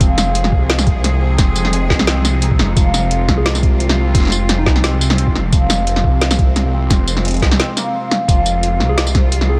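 Half-time drum and bass in F minor at 174 BPM, dark and spacious, this brief cut from a longer piece sets a gritty, overdriven electronic kick and an up-front kit of woody snare, metallic hats and tambourine under a thick, swirling phased saw bass, while a smooth bowed cello section holds pumping sustained chords, a hammered santur rings out dub-echoed arpeggios, and a very quiet, round FM synth lead surfaces at 3.4 and 8.9 seconds, all in light reverb with a short break at 7.6 seconds.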